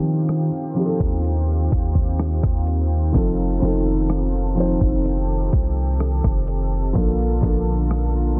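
A dense, heavily limited modern master with a low-pass filter and a filter sweep running its whole length gives this slow, late-night contemporary R&B clip at 63 BPM a moody, closed-in haze. A felt-muted upright piano plays soft, dark accompaniment over a lush, detuned unison pad with chorus, while a deep, boomy 808-style bass sits up front beneath chords moving from Eb69 to F7 and on to Bbmaj7. A dusty sampler-style kit enters at 0.3 seconds with hi-hat, rim click and a thumpy kick, carrying vintage 12-bit grit and soft clipping on the snare.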